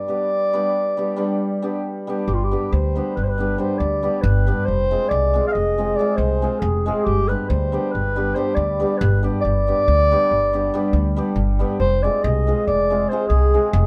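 A dark, soft-attacked clarinet leads with a roomy, classical-style solo over shimmering hammered dulcimer in this fiery, restless cut from a longer Balkan wedding-band folk piece in 11/8 at 278 BPM in G phrygian dominant, with woody, thumpy pizzicato upright bass entering at 2.3 seconds after the opening break and the chords moving between G and Fm under light reverb and a dark production.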